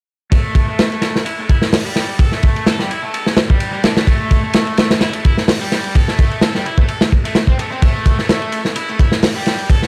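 From 0.3 s, an up-front acoustic breakbeat kit with a tight kick, medium-tuned snare and dark cymbals drives a funky, swaggering 128 BPM breaks groove in A minor with a 55% sixteenth-note swing, while a bright, double-tracked, overdriven electric guitar riff, roughened by tube saturation, 12-bit sampler grit, a low-pass filter and analog delay, sits beneath it, and a barely audible analog shaker hides in the dry, small-room mix of this fragment cut from a longer piece.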